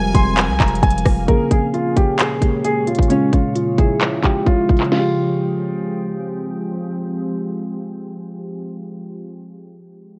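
A half-time trap groove at 132 BPM drives this eerie, hard-hitting hip hop fragment in F minor. An up-front electronic kit of hard-clipped kick, sharp snare, crisp hats, handclaps, rim clicks and crash runs until 5.0 seconds, while a punchy, heavy 808 bass with a sine body and noise layer hits only in the opening moments. A dark, mellow grand piano with deep bass carries the melody through digital delay, a bowed violin section with light vibrato adds a brief second line, soft triangle-toned synth keys with chorus accompany, and a glassy, ethereal FM pad sustains Fmadd9, Bbm7 and Db chords. The mix sits under light reverb with worn, warbling cassette-tape pitch drift and a low-pass filter, and a filter sweep runs from 1.3 to 4.9 seconds.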